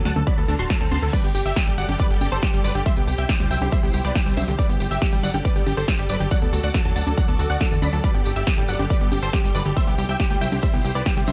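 Uplifting trance at 139 BPM in G major, euphoric and bright, where a huge, bright, phased supersaw lead carries the melody over lush unison pluck arpeggios, a round analog pluck second line and a slow-attack supersaw pad, all pumping to the sidechain with dub echo on the plucks and lead, while a punchy, wave-folded analog bass, an up-front layered kick, a big-room kit of congas, crash, metallic hats and snare, a jingly close tambourine from 1.1 seconds and a reverse cymbal at 0.5 seconds drive the Gsus2, C and D changes in this short, dry-sounding cut from a longer track.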